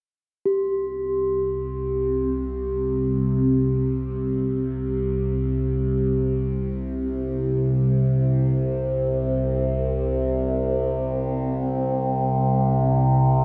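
The recording is bathed in a wet cathedral reverb with a dark, warm production, giving this dark ambient drone a vast, ominous atmosphere that drifts in free time. At 0.5 s a bronze singing bowl begins to ring, struck with a felt mallet around G4, its metallic tone mellow and soft with a slow beating, and a vintage, band-limited color that keeps it tucked behind the main sound. At 1.1 s an overtone-sweeping drone swells in with a slow attack, sitting low between C2 and C3 and placed up front. Its sawtooth and sine layers carry moving overtones and a resonant edge, thickened by chorus, phaser and its own reverb, and it sustains with a long release. Both parts carry on together until the cut at 13.4 s, this short passage lifted from a longer piece.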